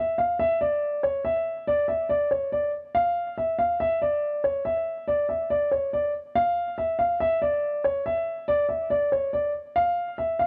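A dark, mellow concert grand piano plays alone from 0.0 to 10.5 seconds in this tense hip hop fragment, set at 141 BPM with a half-time feel in D harmonic minor, its boxy, up-front tone filtered low and sitting in a dry space, while worn cassette tape adds warbling pitch drift as the phrase moves into a new section at 4.7 seconds.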